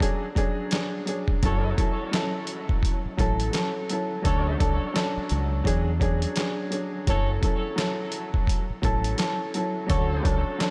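A moody, tough boom-bap hip-hop cut, taken from a longer piece, opens with a woody, slightly detuned upright piano and a gritty sampler-style drum kit playing together as a short break. The piano sits up front and intimate, its action noise audible through a cassette-tape colour and filtering. The kit brings a thumpy kick, a medium-tuned snare, handclaps and hi-hat, all compressed, overdriven and re-recorded in a small room. At 1.4 seconds a dark, round fingered electric bass enters, and a tight jazz-style horn section follows at 1.5 seconds with light vibrato, playing stabs in the background through a diffuse ambient delay. The groove moves at 85 BPM in 4/4 with a 60% swing on the 16ths in F# minor, tuned to A4 = 437 Hz, cycling through F#m7, Dmaj7 and E13. A moderate cathedral reverb with a 6.2-second decay soaks the whole mix in a dreamy haze.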